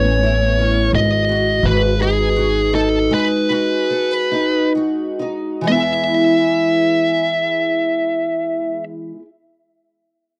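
Pop in a slow, tender 6/8 around 42-57 BPM in E major, this romantic excerpt sets a dark, distorted high-gain lead guitar melody over a double-tracked parlour acoustic guitar, a thumpy pizzicato upright bass that stops at 3.1 s, and a lush, distant bowed string section heard only briefly at the start, all in a dry, close 1970s-style studio sound as the tempo slows from 0.9 to 5.7 s before settling on E.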